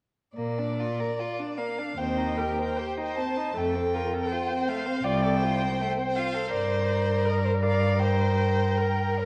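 A worn, warbling cassette sound colors this recording, its pitch drifting while a moderate recital hall reverb surrounds the players. It is a slow romantic movement for string quartet in B-flat major, lyrical and warm, moving in 4/4 at roughly 72 to 83 BPM with a flexible rubato feel. From 0.4 seconds, a rich, distant first violin sings the bowed melody with light vibrato, as a second violin carries a smooth, even inner line with vibrato. Beneath them, a clear cello sits up front on the bass line, touched by tube saturation and played with light vibrato. A focused, distant viola joins at 2.0 seconds with bowed accompaniment colored by vibrato. The harmony moves from B-flat through C minor over E-flat and F to G minor before this fragment of a longer piece breaks off at 9.3 seconds.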